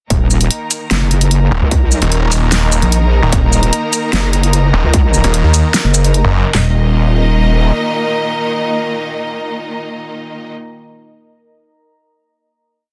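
A dense, heavily limited and nearly dry mix carries this menacing, heavy half-time wobble dubstep piece, which opens straight into the drop and settles on a held final chord from 6.5 seconds. Two layered electronic drum kits drive the beat: one has a distorted kick, floor tom, clap and huge snare, and the other is overdriven and up front with shaker and closed hats. Meanwhile a saturated, detuned square-wave wobble bass changes its wobble speed, and a growling sawtooth bass with a moving notch answers it in chopped phrases. Bright, biting bowed strings hold sustained chords with sidechain pumping and a low-pass filter throughout, joined from 1.9 seconds by a deep, moody ambient pad with chorus and reverb whose chords slowly shift to the end.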